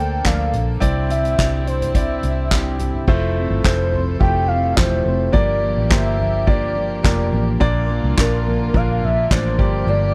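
A dry, close 1970s-style studio sound frames this anthemic, hopeful slice of piano-driven pop in F major, moving at 106 BPM in a straight 4/4 over chords such as Bbmaj7/D, Cadd9, Fmaj7 and Gm7. A clear, intimate grand piano with audible action noise carries the accompaniment while a velvety, detuned synth lead with chorus, slapback echo and portamento sings the melody, backed by an up-front soft-mallet drum kit with a fat snare, punchy kick and dark cymbals and handclaps, and a round, foam-muted electric bass. Behind them sit a full-bodied fingerpicked steel-string acoustic guitar riff with finger squeak and an earthy chamber string section holding sustained bowed chords with light vibrato.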